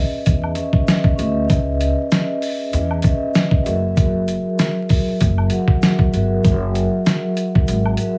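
Boom-bap hip-hop at 97 BPM with a swung 16th-note feel, this reflective, dark fragment is cut from a longer piece and moves from C#m9 to F#9 at 3.7 seconds. A vibraphone played with soft mallets carries the harmony from the very start, its metallic, ringing tone given a mellow, boxy small-room character, slow motor vibrato and a tape-worn, filtered color. An upright bass enters at 0.3 seconds, plucked and woody with steel-string bite, sitting up front between F#1 and E2. The dusty, sampler-style drum kit leads the mix, gritty and overdriven, with a thumpy kick, a medium-tuned snare and hi-hat, closing on a fill at 7.7 seconds. Tucked in the background, a tube shaker, woodblock and group handclap add close acoustic texture, while vinyl crackle, studio ambience and light reverb lend a lived-in haze.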